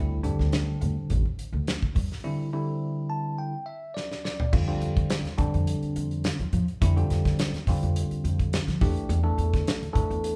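Recorded live in one large, moderately reverberant studio room, this slick, funky electric jazz fusion fragment sets a bell-like, phaser-tinged tine electric piano up front over woody, thumpy pizzicato upright bass, a tight-kicked studio drum kit with bright cymbals, and low-tuned congas sitting in the background, with a break from 2.2 s where the electric piano plays a fill from 2.8 s and the drums add their own fill just before the next section begins at 4.5 s.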